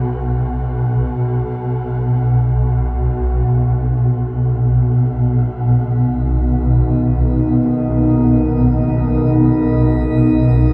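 A swarming, detuned drone sits up front from the start, granular and tense above a faint metallic bronze singing bowl that rings in the background under shimmer reverb until 3.4 s, before a deep, warbling pad of sustained chords with a vintage chorused sheen enters at 4.9 s, all of it cut from a longer piece of desolate, ominous dark ambient soaked in huge, dreamy reverb.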